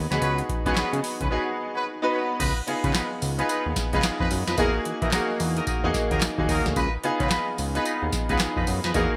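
Bouncy and punchy, this new jack swing excerpt moves at 110 BPM with a swung 16th feel, as a booming analog drum machine with a deep kick, crisp snare, metallic hats, handclaps, tambourine and crash sits up front beside a fat, detuned sawtooth bass with a filter sweep and a fast attack. A clear, polished baby grand piano with analog chorus carries the chords from C#7sus4 into C#9 at 2.4 seconds, then Emaj9#11 and back to C#9, while a distant, roomy horn section adds jazz-style stabs through digital delay. Moderate plate reverb ties it into a bright 1980s-style digital production.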